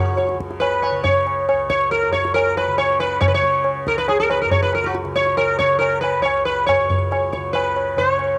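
A home cassette recording with faint mains hum, light reverb and small-room ambience frames this brief, solemn fragment of Hindustani classical music, full of longing. Up front, a mellow, plectrum-plucked sitar carries the melody in a compact middle register, its buzzing tone and sympathetic strings shimmering, while a softly plucked tanpura sits much lower in the mix with a warm, buzzing drone. From 0.2 seconds a high-tuned tabla with short ring joins in, close and dry.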